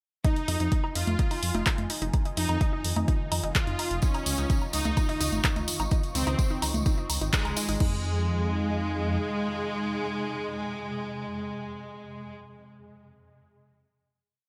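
A dark, hypnotic melodic techno piece in straight 4/4, built on a chord movement from Fm7 to Dbadd9 and back to Fm7. A smooth, detuned supersaw carries a repeating riff, doubled in unison by an earthy chamber violin section with light vibrato, while a moody analog pad holds sustained chords in the background and a warbling, lo-fi pluck spins a three-step arpeggio that drifts against the bar until about 8.0 s. Underneath, an overdriven, punchy kick drives four-on-the-floor alongside a dry analog drum machine of hi-hats, claps, congas, woodblock and crash, with a rumbling detuned saw bass galloping in sixteenths and a jingly, hand-played tambourine adding sixteenths from 4.0 s. The drop runs to 7.8 s, with a band accent at 7.3 s, after which the drums fall away, the bass follows at about 9.2 s, and a swarming, nasal drone lingers very quietly under the final chord. The melody, violins, pad, pluck and bass pump with sidechain, the lead lines and pluck trail delays, and the whole mix has a bright 1980s-style digital sheen in a moderate plate reverb.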